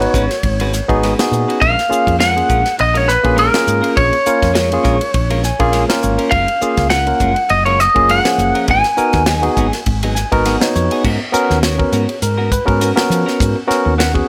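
A tight funk drum kit sets a driving 102 BPM groove in 4/4 with a light 16th-note swing, its dry, medium-tuned snare and tight kick joined by hi-hat, ride and crash. Beneath it, a woody fretless electric bass sounds dark, growly and round, while a barky tine electric piano, bright and lightly overdriven, sits up front with the accompaniment and adds short fills, the first arriving at 5.1 seconds. A clean electric guitar with subtle chorus plays picked, compressed stabs in the background. Over this funky electric jazz fusion bed in G# dorian, a lightly driven lead guitar, slightly broken-up and twangy, carries the melody up front until 10.4 seconds, moving through C#7sus4/G#, A#m7, F#maj9 and G#m7. At 11.0 seconds the music settles onto G#m11 for a new section, all in a small room with light reverb, cut from a longer piece.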